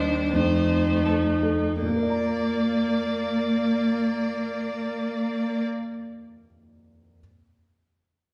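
In a rubato 4/4 that slows through the first 1.8 seconds, this cheerful, lively fragment of a quick classical-period piano quartet movement sets a rich, vibrato-laden bowed violin melody over a clear, distant cello second line and a smooth viola with light vibrato, all supported by a dark, mellow concert grand piano with deep bass that carries on alone after the strings stop at 5.6 seconds until 7.2 seconds, the whole ensemble heard from further back in a reverberant stone room.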